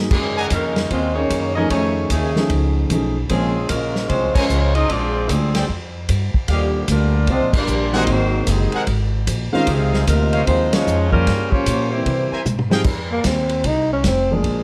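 Swung eighths in 4/4 drive this brassy big band swing, where pizzicato upright bass and a vintage drum kit with dark cymbals carry a roomy saxophone section melody over a trombone section second line, tight trumpet section stabs and a natural baby grand piano that drops out at 3.5 seconds and returns at 7.9, with band accents and a drum fill handing over to a mellow, subtoned tenor saxophone solo with scooped notes at 12.9 seconds.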